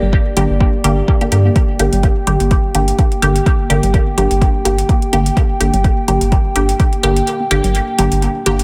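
A filtered dub chord stab, resonant and detuned with phaser and dub echo, pulses up front through this deep, hypnotic dub techno excerpt in G minor at 126 BPM, riding a round, tube-saturated sub bass, a moody, nasal analog pad with chorus, tape-warm congas in the background, metallic overdriven hi-hats and a deep overdriven kick that drops out at 7.3 seconds, with sidechain pumping on the pad, stab, bass and congas under light reverb.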